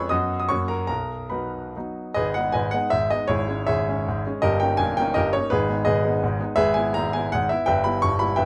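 A clear, natural-sounding baby grand piano plays solo and up front, its notes short in sustain under light reverb, in a graceful, rustic Romantic classical dance in 3/4 with dotted rhythms, taken with rubato at 131-180 BPM in G# minor, opening on major-key harmonies before turning to the minor at 2.2 seconds in this brief passage cut from a longer piece.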